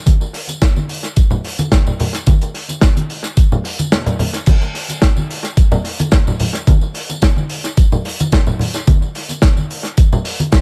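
Sensual and groovy, this short nu-disco excerpt moves at 109 BPM in 4/4, with a light 54% swing on the sixteenths. Up front sits an electronic kick drum, a layered, knocking sound with overdrive that gives it grit and a small-room character. Behind it, a soul drum kit with crash cymbal, hi-hat and snare sounds distant and roomy, its dark cymbals, medium-tuned snare and rolled-off top softened further by tape echo. Congas and tambourine add bright acoustic percussion played with soft hands, also carried by tape echo. The mix leans heavily on echo and small-room ambience, and the kick briefly drops out between 3.9 and 4.5 seconds before returning to drive the groove.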